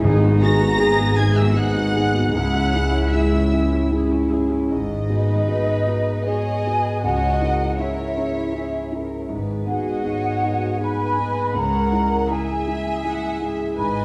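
A dark, wet scoring-stage reverb surrounds this bittersweet, sorrowful film-score passage for orchestra, cut from a longer piece. It moves in a rubato 3/4 at roughly 74-82 BPM in G# minor, tuned to A4 = 437 Hz, swaying between G#m7 and C#m. An up-front grand piano with a mellow, vintage tone and long sustain carries the accompaniment, joined by floating, pure violas and cellos set in the background and a smooth-topped double bass section underneath, the three string sections all bowed sul tasto with soft attacks. Timpani struck with hard mallets sound an articulate G#2 that ends by 1.1 seconds, and from 0.4 seconds a distant, woody violin section sings the lush, vibrato melody while a close, intimate second violin line adds light vibrato alongside it. At 5.1 seconds, shortly after the second section begins, an airy, hollow flute section enters far back with its own gentle vibrato, deepening the sense of longing.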